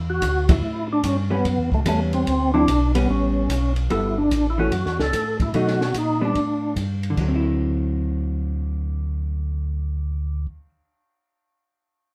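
A swung 4/4 groove at 147 BPM, with 66% swing on the eighths and an early band accent, drives this greasy, bluesy soul jazz organ trio passage in D mixolydian. A mellow, round tonewheel organ carries the bass through a slow rotary speaker, while a fat, lightly overdriven percussive organ with key click and chorus vibrato plays the melody until 6.7 seconds over a compact acoustic cocktail kit with a high-tuned snare and punchy kick that stops at 7.3 seconds. A dark, clean hollow-body electric guitar enters at 1.3 seconds with compressed, picked accompaniment, and moderate studio reverb surrounds the band.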